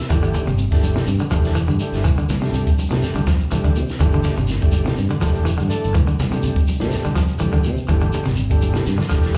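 Defiant and hypnotic, this afrobeat groove at 123 BPM in 4/4 carries a light sixteenth-note swing, cycling between Gsus2 and Cadd9 in a short cut from a longer live gig heard through the venue's PA with club reverb. A dark, round fingered electric bass anchors a punchy compact cocktail drum kit with a high-tuned snare, while a twangy electric guitar at the edge of break-up plays arpeggios with slapback echo and a reedy overdriven combo organ with light vibrato sits back in the accompaniment. Very quiet ringing congas and a grainy, saturated shekere fill out the percussion from 0.1 seconds.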